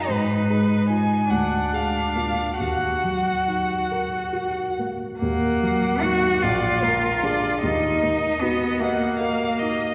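Solemn and yearning, this slow romantic movement for piano trio unfolds in 6/8 with flexible rubato, heard as a brief excerpt from a longer piece. A bowed violin carries the melody with a warm, even vibrato while a rich cello sings a second line beneath it, and a dark, mellow grand piano supplies short-sustained accompaniment, all three playing together throughout and kept up front. A wet concert-hall reverb surrounds the trio as the harmony settles onto its minor home chord at 2.6 and again at 7.6 seconds.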